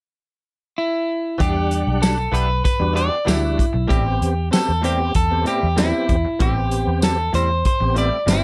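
Straight eighths in 4/4 at 96 BPM drive this smoky, mournful soul blues fragment in E minor, where an up-front electric guitar at the edge of break-up carries the melody with slapback echo from 0.8 s, and then at 1.4 s, over Em7 moving to Am7, the rest of the band arrives: a tight, saturated drum kit with a fat snare, kick, hi-hat and tambourine; a dark, round, foam-muted fingered bass; a thick, gritty overdriven tonewheel organ with key click, chorus vibrato and a slow rotary speaker; and twangy, compressed stabs from a bright direct-recorded clean guitar swimming in lush chorus, all set in light reverb.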